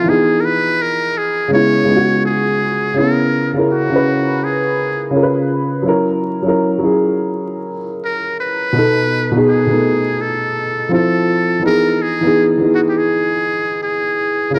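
Swung sixteenths at 83 BPM in 4/4 carry this reflective, hazy hip hop fragment, where a buzzy, thin trumpet with a metal mute plays a close-miked jazz-style solo melody with vibrato over a dark, woody, slightly detuned upright piano, both up front and low-pass filtered, moving from Emaj7 through C#7, F#7 and B7 to Fmaj7 and back to Emaj7 inside a springy reverb and the warbling pitch drift and vinyl crackle of worn cassette tape.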